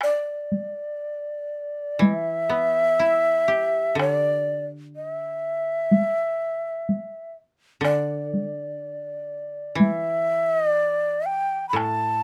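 Close, detailed microphones and a light reverb frame this calm, austere fragment of traditional Japanese chamber music, which moves with a free, rubato feel in 4/4. A mellow, airy bamboo shakuhachi carries the melody up front with a straight, tongued tone, beside a taiko ensemble struck with hard sticks and heard with the sound of a small room. At 2.0 s a koto enters quieter beneath them, its dry, woody accompaniment played with fingerpicks.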